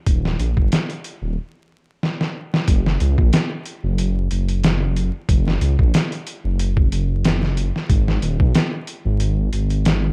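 A gritty, pitched-down sampler-style drum kit features in this melancholic, cinematic trip hop excerpt at 92 BPM in G# minor, tuned slightly flat, with a thumpy kick, a medium-tuned snare and hi-hat carrying a light 16th-note swing. A deep, rumbling detuned saw bass sits up front beside the compressed drums, its saturated, beating tone sustained low beneath the groove. The mix is dry and dark with vinyl crackle, and a stop at 1.4 seconds gives way to a drum fill from 2.0 seconds before the second section settles in at 2.7 seconds.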